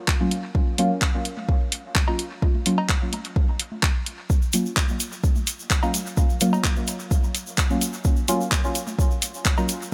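A straight 4/4 pulse at 128 BPM drives this hazy, meditative dub techno excerpt, anchored by an overdriven electronic kick drum that sits up front with a deep, layered punch. Alongside it, a deep house drum kit of handclaps and hi-hat, also overdriven and re-recorded in a small room, carries a dub echo. A deep, mellow chord stab punctuates a Gbmaj7 throughout, its soft, dark tone built from triangle, sawtooth and sine waves with wave-folding, a fast attack and a decaying tail, coloured by chorus, phaser, sidechain pumping and dub echo. Congas and cowbell sit dry and analog in the background with their own pumping and echo, and a grainy, bright tube shaker joins at 4.3 seconds. A light reverb frames the whole short cut from a longer piece.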